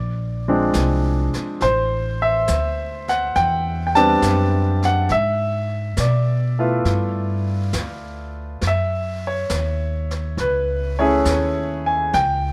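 A slow, swung 4/4 at 68 BPM sets the pace for this tender, late-night jazz ballad excerpt, moving through rich chords from A#9 and Am11 to G13 and F#m9. A clear concert grand piano with a deep low end sits up front carrying the accompaniment, beside a woody, plucked upright bass on steel strings. A distant, roomy brush kit of snare and hi-hat joins at 0.7 s, all in a dry, intimate recording.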